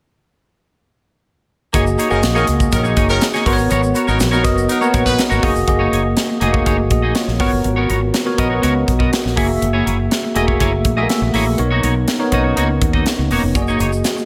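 A bell-like tine electric piano with analog chorus provides the accompaniment in this glossy, urban 1980s jazz-funk pop excerpt, joined by twangy picked electric guitar, a round, dark fretless bass with lush chorus, a crisp fusion kit with a punchy kick, high-tuned snare and gated reverb, a grainy shaker in the background, and a clear horn section with light vibrato that plays only from 2.1 to 5.2 seconds over rich chords such as F#69 and Bmaj9.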